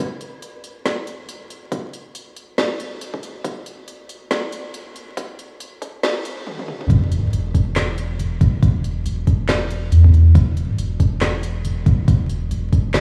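Deep dubstep with a dark, cavernous mood and a half-time, swung feel, cut from a longer piece and heard as if played on a big sound system in a bare room, with large studio reverb and vinyl crackle. A layered deep house drum kit of handclaps, smooth hats, woody snare and toms opens the build-up, joined at 1.7 seconds by a punchy, overdriven electronic kick, before a drum fill and stop lead into the drop. At 6.9 seconds a soft, round dub sub bass enters with a fast attack and sustained notes, sitting up front alongside the kick.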